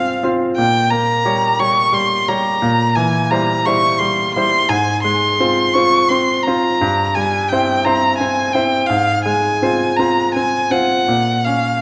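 A solo violin and a grand piano begin together, setting a melancholic, solemn mood in this romantic classical duo, cut from a longer piece. The music sits in F minor at a slow 58 beats per minute in dotted quarters, in 12/8 with a rubato feel, tuned to A4 = 441 Hz. Up front, the single bowed violin carries the melody high between F5 and Db6, its tone rich and smooth with vibrato and an even delivery. The piano accompanies from G2 up to Db5 with a bright, brilliant and polished sound, present and close with short sustain, moving through harmonies such as Fm/Ab, C7/Bb and C/G before arriving on Gb/Bb at 11.1 seconds. A moderate recital hall reverb surrounds the pair, and the overall production is dark.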